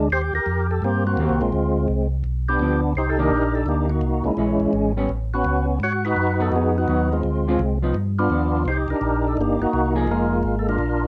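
A greasy, soulful jazz fragment cut from a longer piece, swinging in a brisk four with a light reverb around the trio. A percussive tonewheel organ carries the melody up front, its fat, lightly overdriven tone marked by second harmonic percussion, key click, chorus vibrato and a slow rotary speaker. Beneath it a second tonewheel organ holds down the bass line, mellow, round and clean, with its own key click and slow rotary turning. A hollow-body jazz guitar enters at 1.2 seconds with dark, fingered comping and drops out at 10.4 seconds, sitting a little further back. The harmony moves through minor ii–V turns such as Dm7b5 to G7 into Cm9, with colourful side-steps like Aadd9 and Abm7 before settling on Fm7.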